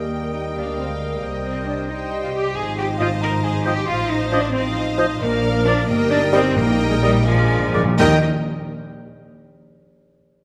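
A dramatic, stormy classical-period orchestral passage in 6/8 and E-flat major, cut from a longer movement, opens with every part but the timpani sounding together. Violins carry a smooth, lightly vibrato melody over second lines from a rich second violin group, a pure, hollow flute, a smooth-topped oboe and a dark clarinet, while a woody viola section, a very quiet bassoon and mellow French horns fill the middle, and up-front double basses join the cellos on the bass. Moving at about 82-91 dotted-quarter beats per minute through Eb, Cm and Fm7/Ab to Bb7 and back to Eb at 8.0 seconds, the orchestra sits in moderate scoring-stage reverb, with round, soft-mallet timpani entering at 5.2 seconds and playing a fill at 7.3 seconds.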